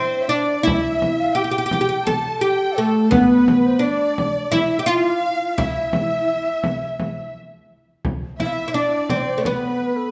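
Soulful and hypnotic, this short passage from a longer Turkish makam ensemble piece moves in a straight 7/8. A woody, fretless oud with double strings carries the melody up front, its plectrum-plucked tone bright and acoustic. Above it, a breathy, reedy ney plays a tongued second line with vibrato, close-miked so its end-blown cane sound comes through clearly. A lush, even violin section also plays a second line in that upper register, bowed smoothly with a warm ensemble sheen. A deep, large frame drum enters at 0.7 s, struck with hard hands and heard close. The recital hall gives everything a moderate reverb, and the music turns to a new section at 8.0 s before the fragment ends.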